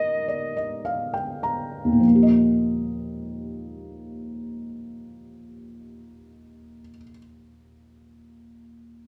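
Sleepy and innocent, this slow, rubato children's piece in Eb major, cut from a longer work at 48-57 BPM, opens with a brief, mellow soprano saxophone note with light vibrato that lasts only until 0.8 s, while an up-front, dark, thick-felt upright piano carries the accompaniment through to 9.1 s, adding a soft fill as the tempo slows over the first 2.0 seconds before the harmony moves from Eb to Ebadd9, all set in a moderate recital-hall reverb.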